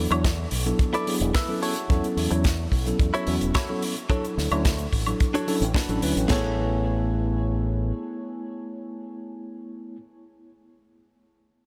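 A punchy, up-front fingered electric bass with an envelope filter drives this sunny, groovy nu-disco piece at 109 BPM in A major. Two dry, polished tight funk drum kits in a small room join it, one playing hi-hat, snare and woodblock and the other china cymbal, kick and snare, until about 6.3 seconds. Meanwhile a twangy, chorused clean electric guitar riff and a mellow tine electric piano steeped in ambient delay move through E7sus4, A6, Dmaj7 and Amaj7 chords, carrying on after the bass stops at 7.9 seconds.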